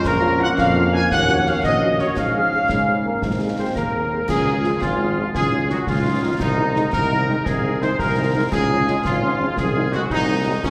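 A wet church reverb surrounds this short cut from a rousing, proud military-style march for wind band, moving in a straight 6/8 at 113 BPM in Db major. Up front, a distant, roomy trumpet section carries the melody over a warm tuba bass. A soft-attacked woodwind section adds a second line, a mellow, very quiet French horn section accompanies, a smooth-topped trombone section in the background holds chords, close concert snare and bass drum sound with dark clash cymbals, and a clear euphonium briefly joins from 2.7 to 4.3 seconds, near the close of the opening section.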